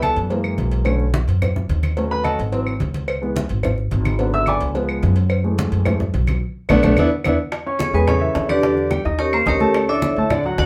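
A lively room sound with a short, wet ambience frames this sunny, danceable Afro-Cuban jazz excerpt, taken from a longer piece and driving at 216 BPM in a straight 4/4 in A major. An intimate grand piano, up front with its action noise audible, takes a solo from the start, moving through chords such as F#7, Bm9 and C#m7 over a dark, woody pizzicato upright bass with steel strings. The percussion bed mixes bright, low-tuned congas struck with hard hands, round and close cowbell and bongos, and vintage, band-limited claves sitting lower in the balance. The band hits an accent from 6.4 to 7.5 s before a ringing, airy vibraphone with medium hard mallets and a slow motor vibrato steps forward for the solo, entering at 7.8 s, its metallic tone carrying the melody over Amaj7, Em7, D#7 and Dmaj9.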